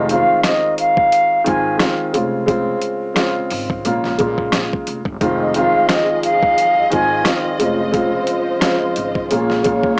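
An airy, mellow concert flute melody opens over an intimate upright piano with audible action noise and a pizzicato upright bass in this gritty, moody boom-bap hip-hop cut from a longer piece at 88 BPM in F minor, as a compressed, dusty soul sampler-style kit with a thumpy kick and fat snare swings up front, and at 5.2 seconds a dark, lush bowed string section with vibrato joins the cycle of Fm7, Dbmaj7/F and Bbm7, the flute, piano and strings bathed in plate reverb and cassette tape grit for a small-speaker home-recording feel.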